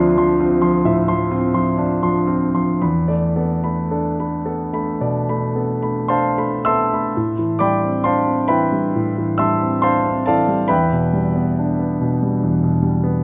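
A warm concert grand piano sits up front in this short cut from a longer impressionist solo piano piece, its deep bass and natural tone carrying a nocturnal, hazy mood. The tempo drifts between 54 and 74 BPM in a rubato 4/4, and the music rests in A minor, with the piano ranging from D2 up to E6. The opening passage moves from Dm9 to E7sus4, then a second passage begins at 7.1 seconds on Am11 before settling onto Em7. Close, detailed microphones capture the instrument within a moderate recital hall reverb, giving the sound an intimate presence framed by a soft sense of space.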